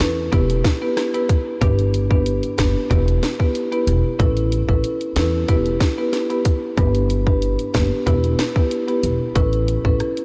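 Tough and sultry, this dancehall passage in a straight 4/4 is cut from a longer piece. An electronic, produced island pop drum kit sits up front, with a tight kick, sharp snare, rim clicks and warm hi-hats. A pizzicato upright bass with steel strings carries the low end, acoustic and thumpy, while a marimba played with medium mallets on rosewood bars adds woody accompaniment. The harmony circles through Em, G and Aadd9 across the whole section, which runs to about 10.2 seconds. A moderate cathedral reverb soaks the mix in a dreamy haze, and lossy compression artefacts can be heard.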